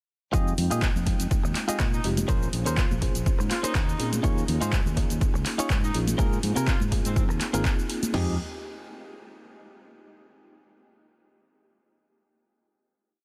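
A punchy analog drum machine drives this short, funky and nostalgic filtered disco house piece at 123 BPM in F minor, its four-on-the-floor kick, snare, toms and crash sitting up front with a tape-warm tone, while a second drum-machine part adds pumping hi-hats, handclaps and cabasa beside very quiet, close and dry egg shaker and congas. A growly, overdriven fingered bass plays a syncopated funk line under a reedy electric piano with fast tremolo and phaser holding rootless chords, and a twangy, compressed clean guitar with 12-bit sampler grit picks a funk chord riff, all three pumping to the sidechain over Fm9, Bbm9 and Ab69. A background horn section with light vibrato and delay adds short phrases from 1.9 to 7.2 seconds, and the drop gives way at 8.1 seconds to a final Fm9 chord ringing in digital ambience.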